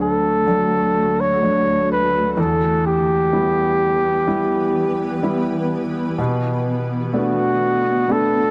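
A heartfelt, hopeful pop ballad fragment at 63 BPM in a straight 4/4, tuned slightly below standard pitch, moving from D through Em to Bm7. An up-front flugelhorn carries the melody with a warm, smooth top, light vibrato and a punchy pop-style solo voice, while a clear, intimate grand piano accompanies with audible action noise and a polished presence. From 0.1 s, a quieter, shimmering ambient pad sustains ethereal, detuned chords with an octave-up sparkle, chorus and its own reverb, all set in a dry, close 1970s-style studio booth.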